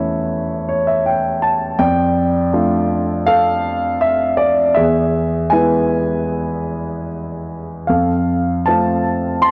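In a free, rubato 4/4, this dark and melancholic classical piece for solo piano is cut from a longer work, with a concert grand carrying the entire lyrical line from E2 up to C6. A short fill sounds between 0.3 and 1.8 seconds as the harmony moves from A/E to Dm/F, then settles onto E and finally F near the close at 9.5 seconds. The piano sits up front with a warm tone and deep bass, captured in a dry, gritty recording touched by moderate studio reverb.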